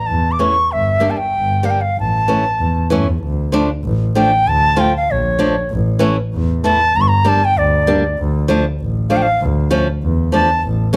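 A pure, reedy bansuri with tongued notes and vibrato sings the soulful, bittersweet klezmer melody at 97 BPM in 2/4, close and bathed in plate reverb, over fingerpicked acoustic flamenco guitar and a dark, woody bowed double bass in a lightly reverberant room, in this passage cut from a longer piece.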